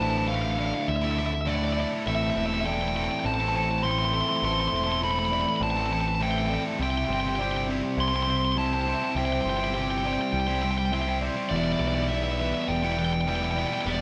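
Rock with a cinematic, cathartic mood, this short section cut from a longer piece moves in a straight 4/4 feel, with the full band playing live in one room with moderate studio ambience. Up front, an overdriven semi-hollow guitar with a warm, hollow-body tone carries the picked melody throughout, while a round, growling picked electric bass, dark and overdriven, anchors the low end. Two distorted guitars share the riff: one tight and bright, the other sludgy and dark in the background. Further back, two more electric guitars pick arpeggios, one slightly broken-up and twangy through a small old amp, the other at the edge of break-up and bathed in spring reverb. The chords move from Dmadd9 to Am at 2.1 seconds, C at 6.8 seconds, and Em7 at 11.5 seconds.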